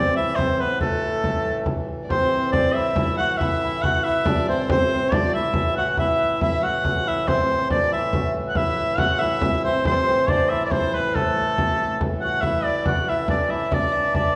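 A clear shawm leads this medieval dance, carrying the folk-style melody up front with a light vibrato and a gentle onset, though its tone comes across as distant and roomy. The mood is mysterious yet driving, moving at 93 BPM in a straight 6/8 in A dorian. Beneath it, a breathy, band-limited melodica plays a second line, while a hand-pumped harmonium holds a reedy, breathing drone in the background. A close frame drum, played with soft hands, sits up front from 0.4 seconds, and a dark, woody fiddle joins at 2.0 seconds as a bowed second line behind the others. The recording places the group in a wet recital hall heard from further back, and this cut from a longer piece moves into a new section at 12.4 seconds.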